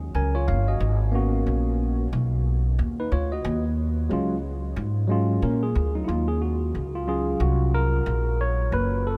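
A woody pizzicato upright bass opens this mellow, cool jazz-hop excerpt at 0.0 seconds, and a clean tine electric piano sounding through its built-in speakers joins at 0.2 seconds with a brief fill over lush minor eleventh chords. Both parts sit up front with a relaxed swung feel, and the whole dreamy mix is soaked in a huge ambient reverb. At 6.1 seconds the harmony shifts to a brighter dorian colour and the electric piano takes a solo over the bass until the cut.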